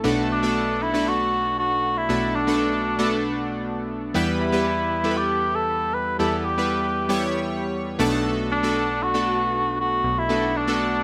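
A straight 4/4 pulse at 117 BPM carries this nostalgic, dramatic pop fragment in B minor, where glossy, chorused retro synth keys with a sawtooth tone and filter sweep lay down Bm7, Em and back to Bm7, while a mellow cor anglais, played in a classical style with light vibrato and a touch of delay, sings the melody from 0.3 seconds in a moderate studio room.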